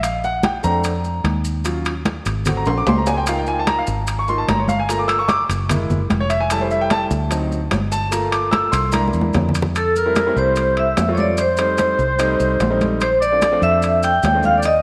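A sunny, danceable Afro-Cuban jazz excerpt in F major at 148 BPM, where a clear, intimate grand piano with audible action noise solos over a punchy, foam-muted fingered electric bass, bright soft-handed congas, ringing metal-shell timbales and grainy maracas, with drum fills at 2.7 and 8.9 seconds, before a metallic vibraphone with fast motor vibrato and slapback echo takes the melody at 9.8 seconds alongside a classical-style oboe second line, all in a wet echo-chamber reverb over rich extended chords like Bbmaj9, Ab7b9 and Db69.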